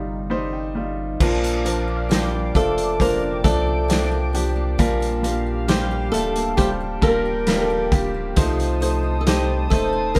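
A straight 4/4 pulse at 67 BPM carries this longing, emotional pop ballad, heard as a portion cut from a longer piece. It opens on a Cm chord with a clear, polished baby grand piano fill, while a fingerpicked flamenco guitar with fresh strings and finger squeak carries the melody. Alongside them sit a deep, full sub bass with its octave and a shimmering, retro pulse-width pad that slowly blooms into detuned, chorused sustained chords. At 1.2 seconds, a loose indie drum kit arrives up front, with a tight kick, medium-tuned snare, hi-hat and crash cymbal and a rolled-off top, joined by a picked steel-string acoustic guitar playing arpeggios in the background. The harmony then moves through Bb, Gm7 and Adim, and the whole band sounds as if playing live in one room, wrapped in a moderate studio reverb.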